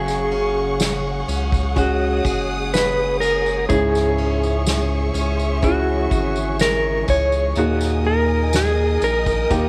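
A mellow, clean electric guitar carries a longing melody with tremolo and slapback echo over felt-muted upright piano, whose thick felt and audible action noise give it an intimate, dark tone, joined by lush bowed strings with expressive vibrato, a picked plugged-in steel-string acoustic guitar playing arpeggios with finger squeak, and a deep, saturated sub bass sitting up front. From 0.1 seconds a roomy, soft-mallet drum kit with punchy kick, snare and ride settles into the background alongside a jingly, vintage-sounding tambourine. This melancholic pop ballad moves slowly at 62 BPM in 4/4 through F#sus2, C#m and D#sus4 under light reverb, and the section is cut from a longer piece.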